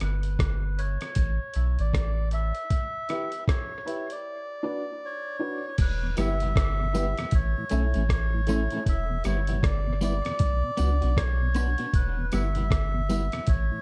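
Dub reggae with a heavy, spacious mood, this excerpt is cut from a longer piece and built on a swung 4/4 groove that cycles through Em, A and Bm. A reedy, breathy melodica carries the melody throughout, filtered and trailed by tape echo, while a dark, worn upright piano with audible action noise and a slightly detuned, woody character plays stabs through its own echo until 8.7 seconds. Underneath, a deep, round sub bass sits up front alongside a gritty, compressed sampler-style drum kit with a thumpy kick, hi-hat, rim click and crash cymbal, re-recorded in a large room. The opening stretch to 5.8 seconds is a break, after which a mellow tonewheel organ with chorus vibrato and slow rotary speaker settles into the background, joined at 6.2 seconds by a clean, twangy, scooped electric guitar through tape echo and faint tambourine and woodblock percussion. The production is dark, with little reverb, so the parts stay close and dry apart from their echoes.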